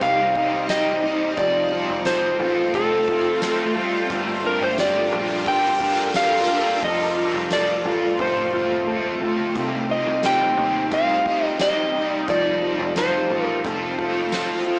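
Dream pop at 88 BPM, haunting and melancholic, this excerpt from a longer piece sets a dark, slightly broken-up electric slide guitar melody up front over a double-tracked overdriven guitar with harmonic tremolo, a shimmering, ethereal pad with phaser and octave-up shimmer, fingered clean guitar arpeggios with analog delay, a punchy foam-muted bass and a soft-mallet drum kit with a boomy kick in the background with a fill at 8.2 seconds, while a very quiet ringing handpan drops out at 4.4 seconds and returns at 8.9 seconds, all colored by a gritty cassette-tape, small-speaker sound over chords moving from Cm to F and Gm7.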